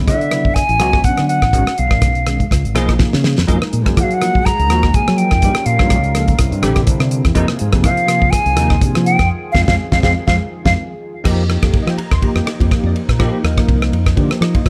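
A swung sixteenth-note feel in 4/4 drives this funky, intense electric jazz fusion excerpt, led by a dry, damped 70s drum kit up front, with a fat snare, tight kick, dark cymbals, rim clicks and hi-hat, over a round fingered electric bass. A bell-like tine electric piano with ensemble chorus provides the accompaniment, while an airy, hollow concert flute carries the melody with vibrato and a crisp attack until 10.7 seconds. A shimmering, detuned pulse-width pad enters in the background at 3.5 seconds, and drum fills and a band accent lead into a shift to F9sus4 at 11.3 seconds, all under light reverb.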